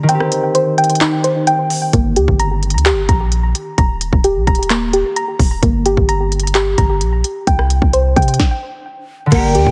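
Menacing, brooding half-time trap opens with a fingerpicked, ringing concert harp and a dark, round pluck playing chorused, delayed arpeggios over a minor progression, joined at 0.1 seconds by a gritty electronic kit with sharp snare, crisp hats, handclaps and rim clicks, its hard-clipped kick held back until 1.9 seconds. A deep, boomy 808-style bass arrives at 1.9 seconds, and the drums drop out from 8.4 to 9.3 seconds before the harp returns alongside breathy, hollow cane pan pipes and a glassy, ethereal glass harmonica in the background. The mix sits in a small room with light reverb and a heavily compressed radio-like sheen.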